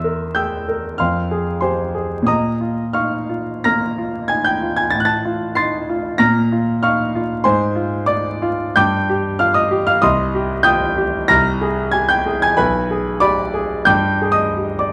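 A clear, smooth grand piano with a vintage, short-sustained tone sits up front, playing solo across a range from B1 to C7 in this bittersweet, stormy romantic character piece at 93 BPM in 4/4 with uneven, rubato beats and a tuning of A4 = 439 Hz, its 14.9-second passage cut from a longer piece moving through minor-leaning harmony such as Fm, Bbm and Cm, heard through close, detailed microphones with vinyl crackle and a moderate recital-hall reverb.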